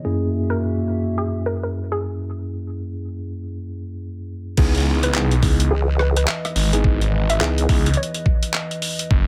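Swaggering and funky, this glitch hop excerpt moves at 106 BPM in 4/4 with a swung sixteenth-note feel in C# dorian. It opens on an F#7 chord, with a dark, moody analog pad holding sustained chords under a pumping sidechain and chorus. A mellow tine electric piano plays up-front stabs through digital delay, while a woody, wave-folded pluck carries a short-decaying melody from 0.5 seconds. After a break, the drop lands at 4.6 seconds on C#m9, bringing in a thumpy, overdriven electronic kick, a gritty boom bap sampler-style kit of crash, handclaps, hi-hat and rim click, and a swirling, thick detuned saw bass with phaser and tube saturation. A nasal vowel-sweep wobble bass joins on C#2 from 5.7 to 7.7 seconds, resonant and chorused, sitting up front with the kick in a dry, close mix.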